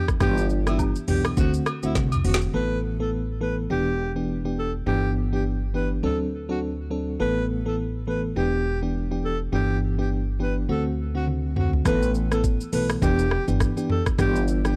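A breathy alto saxophone opens this mellow, sultry afrobeats excerpt in A dorian, its clear, whispered solo line carried by tape echo over a gently swung 103 BPM groove. At once an electronic afro-pop drum kit joins, with a knocking kick, woody snare and metallic hats, while agogo bells and woodblock add a brief acoustic, live-room sparkle before dropping away around 2.2 seconds. An FM electric piano layered with a soft pad supplies lush, dreamy chords cycling through G6, D7, Asus2 and Em7, its detuned, decaying tones shimmering with chorus and tremolo. Underneath, a pizzicato upright bass sits up front with a growly, steel-string bite. After a fill at 2.0 seconds the drums fall silent through the middle, leaving saxophone, keys and bass to float until the kit returns with another fill at 11.3 seconds. The whole recording has a dry, gritty hardware character with transformer saturation and small-room ambience.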